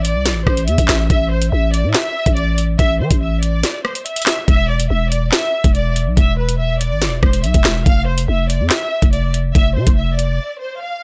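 Dry and gritty with a dull top, this short cut from a longer drill track sits at 142 BPM in a half-time 4/4 feel in A minor, dark and menacing throughout. An up-front electronic kit with a knocking kick, sharp snare, metallic hats, handclaps and rim clicks, re-recorded in a small room, plays alongside a growling, buzzy 808-style bass with a fast attack, decaying notes and transformer saturation. Above them a lush bowed violin section carries the melody with vibrato, portamento and a smooth top; a brief break lands at 3.6 seconds, and the bass and drums drop out near 10.4 seconds, leaving the strings to close.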